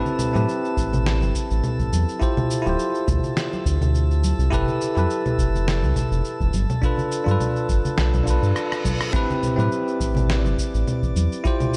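A bell-like tine electric piano, a round analog bass and a drifting glass-harmonics texture open this smooth sunset chillout excerpt in A minor at 104 BPM, with a gentle 16th-note swing. The electric piano sits up front, bright and clean with a touch of delay, while the bass is deep, dark and tube-saturated, its sawtooth, sine and triangle tones evolving under a fast attack and sustained notes. High above, the glassy texture adds calm, chorused overtones with a slow attack and long release. A sampler-style kit of electronic shaker, congas, fat snare and rim click brings a gritty, tape-warm character, joined by background congas with a thin skin and a deep analog electronic kick from 0.8 seconds. The chords move from Am9 through Dm11, Fmaj9#11 and G7, and a reverse cymbal from 8.3 seconds and a drum fill at 8.6 seconds lead back to Am9, all within a dark, lightly reverberant production.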